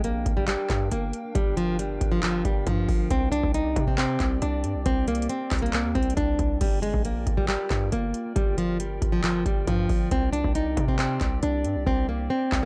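A half-time trap groove at 137 BPM in 4/4 drives this brooding, melancholic hip hop cut in G minor, slightly sharp of standard pitch. A booming analog drum machine sits up front with a deep kick, metallic hi-hats, handclaps and crash cymbal, its overdriven sound re-recorded in a small room, and the hi-hats drop out at 11.9 seconds. Beneath it, a punchy, heavy 808-style bass with a sine body, a noise layer and a fast, decaying attack fills the low end. A fingerpicked nylon-string guitar carries the classical-flavoured melody up front in a mid register. A warbly, nostalgic lo-fi pad of detuned, wave-folded tones holds mellow sustained chords in the background, softened by chorus and its own reverb. The harmony moves from Gm7 to Csus2 twice across the roughly 12.7 seconds, and the mix as a whole is dry and gritty, with a hardware edge.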